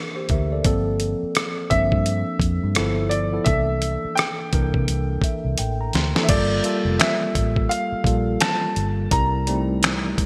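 A clean tine electric piano opens this sultry, introspective neo-soul and R&B excerpt, sitting up front through its built-in speakers over extended chords. At 0.3 s it is joined by a round, punchy, foam-muted electric bass and a gritty, compressed sampler-style drum kit with gated reverb, whose thumpy kick, fat snare, hi-hat, rim clicks, finger snaps and crash ride a swung 16th-note feel. A clear, natural grand piano melody with subtle chorus and digital delay enters at 1.7 s, and an electric piano fill and a drum fill lead into a new section at 6.3 s, all within a bright 1980s-style digital production bathed in lush hall reverb.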